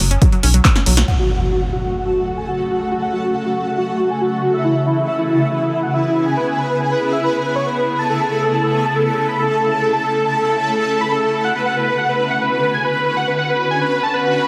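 A dense, compressed supersaw carries the melody from 1.1 s to 14.4 s, its huge, detuned unison sound pumping against the beat through a low-pass filter that sweeps across the whole passage, with tape echo trailing its phrases. This is a bittersweet, soaring uplifting trance passage cut from a longer piece, at 139 BPM in 4/4, in F# minor, with chords moving from F#m through E6 and A to Bmadd9. It opens on a brief Bsus2 lead-in, where a round, chorused analog pluck plays arpeggios over a tight, driving sequencer bass with a sawtooth bite. A punchy analog drum machine with snare, handclaps, hi-hat and crash cymbal is joined by a tape-warm electronic kick; its hats and cymbals pump and are filtered, and the snare is filtered too. The drums roll into a fill, with a band accent hitting at 1.0 s. An up-front impact lands at 1.1 s with the melody's entry, a swell rises at the close, and a moderate, huge ambient reverb washes over the sound.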